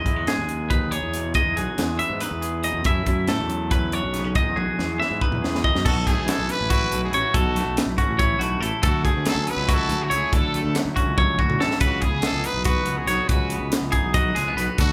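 This math rock and midwest emo piece, cut from a longer work, moves at 282 BPM in eighths through a straight 7/8 in E major, with a wistful, playful mood and chords drifting from Emaj7 and F#m7 to B9sus4, Dmaj9 and C#m11. Two twangy electric guitars share the texture, one fingering warm, scooped arpeggios high in the range and the other picking a bright, compressed accompaniment up front, over a growly fuzz bass and a crisp fusion kit with a high-tuned snare and punchy kick. A raspy, gritty trumpet with light vibrato enters at 5.9 s to carry the melody, while drum fills at 4.6 s and 11.2 s punctuate a band playing live in one room with moderate large-studio reverb.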